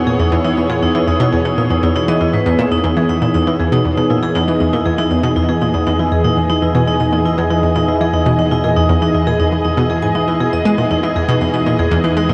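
Luminous and cosmic, this ambient, sequencer-driven space music moves at 119 BPM in a straight 4/4, resting on a single Emaj7 chord in E major for the whole 12.3 seconds of a passage cut from a longer piece. A lush, thick unison pad holds sustained chords from E3 to G#5 with a slow attack and an airy noise layer, bathed in chorus, phaser and shimmer reverb. Up front, an analog pluck plays a riff between E2 and G#3, its detuned sawtooth and pulse tones given a fast attack, short decay and bright chorused sheen, along with analog delay. A vibraphone with hard mallets plays metallic, ringing arpeggios from D#4 to G#5, dark and smooth with a slow motor vibrato, carried by analog delay and shimmer reverb. In the background, a round analog bass sustains a deep, evolving E2, its sawtooth and sine tones colored by ring modulation. The whole piece sits in a huge, wet ambient space with a long 8.3-second decay and a soft top end that rolls off above 10.5 kHz.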